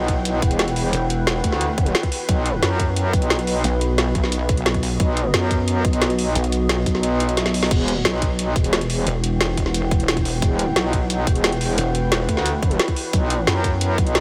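Dark, aggressive technical drum and bass excerpt, where a metallic, overdriven FM wobble bass growls up front over a tight layered kick, a woody snare and metallic hats, while a moody detuned sawtooth pad pumps beneath, a mellow pulsing pluck bass surfaces in bursts, the kick drops out at 7.0 seconds ahead of a drum fill at 7.4 seconds with a barely audible swell, and the whole mix is soaked in dreamy reverb.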